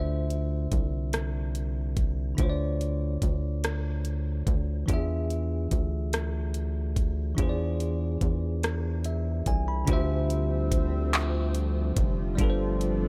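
The sound is dry and close, with little reverb, and the piano, bass and drums sit up front in a short fragment cut from a longer slow R&B piece in 6/8 at 48 BPM, tuned to A4 = 435 Hz. A bell-like, bright tine electric piano carries the accompaniment, moving from Dm9 to E7b9 in a late-night, yearning mood. Underneath, a rubbery, hollow square-wave bass with a nasal, bouncy filter pluck holds the low end. A produced electronic drum kit, re-recorded in a small room, supplies a knocking kick, metallic hi-hats, handclaps and rim clicks on a straight feel. At 9.9 s the harmony shifts to Dm11 and then G9sus4 as a lush, thick unison pad enters with a slow attack, its detuned sawtooth tone warbling with vintage chorus.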